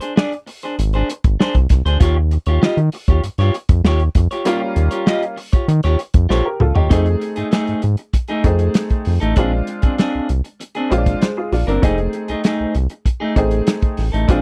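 This is an energetic, strutting funk excerpt at 98 BPM in straight 4/4, cut from a longer piece. It opens on a break, with a soul drum kit of dark, smooth tone (tight kick, medium-tuned snare, hi-hat and toms) sitting up front beside a clean, picked electric guitar, while the harmony moves from a rootless Bb9 to Eb9. A round, deep analog bass with a fast attack and sustained notes joins at 0.8 seconds. A woody, worn, slightly detuned upright piano adds short, clear stabs from 4.4 seconds. A drum fill at 6.3 seconds leads into the second section, where the harmony moves between F7#9 and Bb9, and the whole piece has the dry, close sound of a 1970s studio recording with little reverb.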